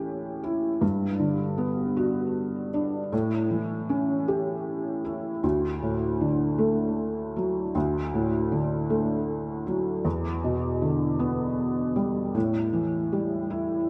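Folk piano piece in 6/8, cut from a longer work, with an intimate, hopeful mood. A felt-muted upright piano plays alone for the whole 13.9 seconds, its tone soft and mellow and sitting up front, ranging from D2 to G4. Analog chorus and delay color the piano, and a wet plate reverb with a long 2.9-second tail soaks the mix in a dreamy haze. The harmony moves gently from A7 through Gmaj7 and back to A7, settling on D at 5.4 seconds before passing through Em7 and closing on an open A7 chord. The unhurried feel and muffled, warm character give the fragment a hushed, tender quality.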